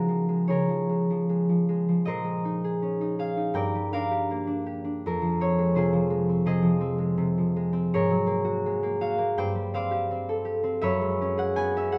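Lightly reverberant, this short classical excerpt features a solo concert harp, ringing, fingerpicked and up front, moving with graceful, peaceful rubato across a range of F2 to Ab5 through lush eleventh and seventh chords, from Ebm11/Db at the start to Gb11 at 10.8 seconds.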